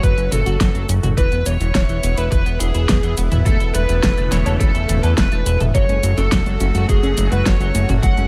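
A moody, nocturnal synthwave passage in F# minor at 105 BPM opens with a dark, distorted lead guitar carrying the melody through tape echo, joined by a pure, very quiet FM bell adding a second line, over a lush, detuned unison pad with chorus and phaser, a twangy, slightly broken-up electric guitar riff in the background, and a fat, up-front sawtooth bass that pumps with the sidechain. An overdriven, knocking electronic kick and a pop kit with a fat snare, hi-hat, shaker and toms drive a straight 4/4 through F#m, E and Aadd9/E, and at 5.7 seconds a warbling, lo-fi pluck joins with arpeggios as the chords settle on F#madd9. The mix is dry, with little reverb, and the excerpt is cut from a longer piece.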